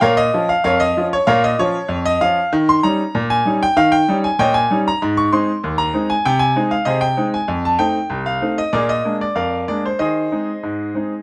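Ragtime piano in A-flat major, cheerful and lively, moving at 96 BPM in a straight 2/4 feel in this short excerpt from a longer piece. A solo concert grand with a brilliant, up-front sound and deep bass plays across a range from C2 to Db6, working through a progression from Bbm and Eb7 to Ab, then F7 and Bb7 before settling on Ab/Eb at 10.0 seconds. A moderate studio reverb gives the piano a touch of room around it.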